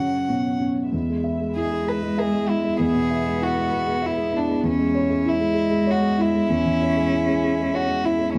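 A dark, warm studio sound with a moderate reverb frames this tender, hopeful neoclassical fragment for piano and strings, cut from a longer piece and moving at 97 BPM in a rubato 3/4. A felt-muted upright piano sits up front with a mellow, boxy accompaniment, while a single bowed violin, played sul tasto, floats a rich, pure melody and a lone cello adds a second line with vibrato and a smooth top. A very quiet chamber string section holds soft-attack sustained chords beneath, as the harmony moves from F#5 to E at 0.9 seconds and to C#m/E at 4.7 seconds.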